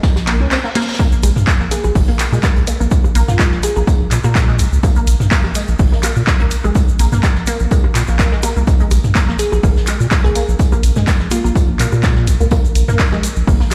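A swung 125 BPM pulse in 4/4 drives this cool, clinical minimal techno cut in Bb minor, anchored by a punchy, overdriven analog kick sitting up front alongside a deep, thick saturated sine sub bass that pumps against it. Around them, a layered techno kit of handclaps and hats re-recorded in a large room mixes with tape-warm electronic percussion blips and toms, while a distant brush kit of hi-hat, snare and tambourine and a grainy, band-limited vintage tube shaker sit in the background. A juicy, squelchy resonant blip pluck carries the riff, its pulse and sawtooth tones evolving through phaser, chorus, cassette tape character and dub echo. A crystalline wavetable pluck with a filter sweep and noise layer adds brief melodic phrases from 1.7 to 3.8 seconds and again from 9.4 seconds. Early on, a reverse cymbal sounds in the background as the kick drops out between 0.5 and 1.0 seconds, all heard as if played on a big sound system in a bare stone room.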